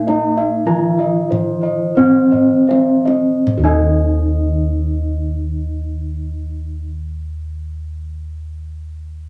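Javanese gamelan at a slow 38-52 BPM in 4/4, serene and shimmering, with a lead bronze metallophone carrying the melody up front in a ringing, boxy tone struck by wooden mallets, its paired tuning producing shimmering beats, while a second metallophone plays a mid-forward accompaniment below. Bossed gongs add bright, airy arpeggios and a round, warm bass line, and a mellow, padded-mallet metallophone traces soft arpeggios in the background. The opening slows through its first 3.4 seconds as the kendang, deep and played with soft hands, adds a drum fill from 2.0 seconds before falling silent at 4.2 seconds, all within a moderate club reverb in this fragment of a longer piece.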